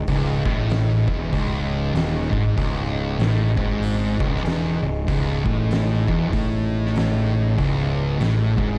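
Hypnotic and heavy, this swung stoner and doom metal excerpt sits on one chord as two thick fuzz guitars grind out a picked riff, one darker and set back in the mix, over a growly fingered bass and an oversized low-tuned drum kit with a fat snare and a punchy kick in a bright stone room, while a clean, percussive tonewheel organ with key click, chorus vibrato and slow rotary speaker holds sustained chords in the background, under light reverb in a warm production.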